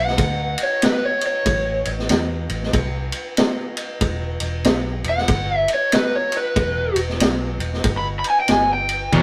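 Blues rock in the power-trio mould, with a southern rock streak, this short cut from a longer piece has a swaggering, gritty mood and a swung 4/4 feel. An overdriven slide guitar, dark-toned, up front and played with fingerpicks, carries a solo from the start to 9.1 seconds over a Bm, Am and Em progression before the harmony drops out. Beneath it, a vintage fingered electric bass, foam-muted, amped and round, sits low and punchy, while a vintage acoustic drum kit with a punchy kick, high-tuned snare and dark ride cymbal keeps time in a mid-forward, rolled-off studio sound. At 9.1 seconds a bright, crunchy, double-tracked guitar riff comes in up front just as the clip ends. The whole take has the rough character of a rehearsal-room recording, with moderate booth ambience and a short decay.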